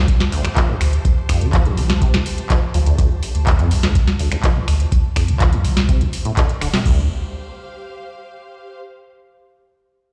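Acid house at 124 BPM in D minor, hypnotic and gritty, built on a squelchy, resonant sawtooth acid bass riff carrying tube saturation, ensemble chorus and tape echo under a filter sweep, a round sine sub bass pumping with the sidechain, a deep, tape-warm electronic kick, and a booming analog drum machine with a tonal snare, metallic hats, handclaps, finger snaps and crash, while a lush bowed string section with vibrato fades out through the first 6.9 seconds and carries on alone until 8.8 seconds, all heard through a big sound system in a bare stone room.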